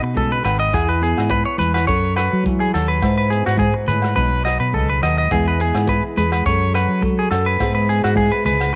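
A straight four-beat groove drives this sunny highlife guitar band fragment, with a vintage drum kit entering at 0.2 s on hi-hat, rim click and a punchy kick, its rolled-off top colored by cassette tape, while soft-handed congas with a thick skin join at the same moment and ringing agogo bells arrive at 0.5 s, both sitting in the background. A fingered electric bass anchors the bottom with a round, direct-and-amped tone. Up front, a twangy clean electric guitar spins picked arpeggios through tape echo, while a bright, fingerpicked nylon-string guitar with fresh strings supplies classical-flavored accompaniment beneath it. The harmony cycles twice through B, E, F#m and E/G#, giving the passage a warm, sunny glow. Light reverb and small-room ambience frame a home recording on cassette, and the clip is cut from a longer piece.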